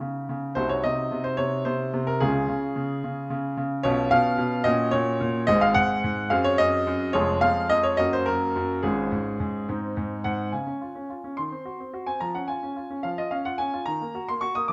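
Close, detailed microphones capture a solo baby grand piano sitting up front in a recital hall, its moderate reverb adding a soft halo to each phrase. This is a classical-period sonatina in 6/8, playful and graceful in mood, heard as a short passage cut from a longer piece. The piano's tone is clear and open, with a long sustain that lets the harmonies ring, and the writing spans from a deep F1 up to a bright Eb6. The opening passage moves through diminished and seventh-chord colours before settling on tonic and dominant harmonies. At 10.5 s a new section begins, touching on a diminished chord again before the excerpt breaks off on an E-flat minor chord at 13.9 s.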